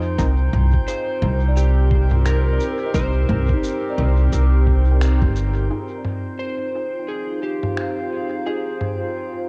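A lo-fi home cassette recording with light digital ambience opens on this spacious, deep fragment of ambient dub at 87 BPM, swung 16ths moving from Cm7 to Fm7 at 5.7 seconds. A warbling, nostalgic pad and a glassy texture of drifting overtones, both chorused and reverberant, hover alongside a dark, slightly broken-up electric slide guitar melody with 12-bit sampler grit and dub echo, while a very quiet, muted dub chord stab and a hollow, ringing kalimba add small touches. Up front, a woody pizzicato upright bass plays until 5.7 seconds, joined by a thumpy, muffled electronic kick in the background and a pitched-down sampler kit of finger snaps, shaker and toms with dub echo, the band hitting an accent at 5.0 seconds.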